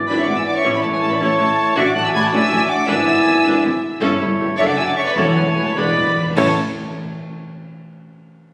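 Lively and graceful, this fast, dramatic romantic orchestral passage in 6/8 with rubato sets a rich, distant violin melody over a second violin line, airy flute, clear oboe and dark clarinet, with a focused viola section, clear bassoon and a tight, very quiet horn section filling the harmony. Rich cellos, double basses and a very quiet tuba anchor the bass. Bright cymbals and bass drum enter at 4.0 seconds, and timpani with medium mallets join at 5.2 seconds for a fill leading to a full accent at 6.4 seconds, all heard in a reverberant hall captured with a roomy, phone-like sound.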